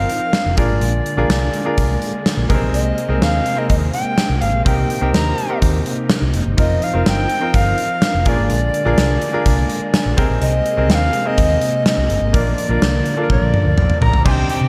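A dark, warm 1980s-style pop production with light small-room ambience carries a dramatic, nostalgic mood in a straight 4/4 feel. A breathy tenor recorder with delay and a chiffy attack leads over a brilliant grand piano that adds a fill at 9.7 seconds, while a vintage string machine of violas holds soft-attack, chorused chords in the background. A round, foam-muted fingered bass and a punchy gated 80s kit with bright cymbals sit beneath, the drums playing a fill at 13.3 seconds. At 14.0 seconds a twangy clean electric guitar with spring reverb enters, joined moments later by a very quiet, double-tracked overdriven guitar.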